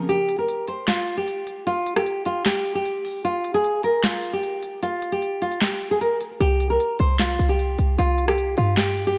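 A brooding, melancholic trap excerpt at 152 BPM in half-time opens with a dark, full-bodied nylon-string guitar melody, filtered and touched with delay, over an overdriven electronic kit of sharp snare, crisp hats, handclaps and rim clicks, before a punchy, tight 808-style bass with a sine body and noise layer joins at 6.4 seconds, all set in light digital ambience.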